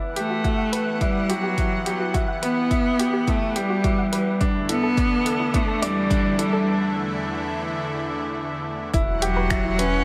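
Intimate and cinematic, this piano and strings electronica excerpt at 106 BPM in E minor sets a bright, woody upright piano riff with tape echo and a clear, focused bowed cello melody over a lush detuned pad, a very quiet mellow pluck arpeggio, tape-warm deep house snaps and hi-hat, and an up-front electronic kick, building through a break from 6.7 seconds until a round analog bass with sidechain pumping arrives at the drop at 8.9 seconds, all within a wet echo chamber reverb.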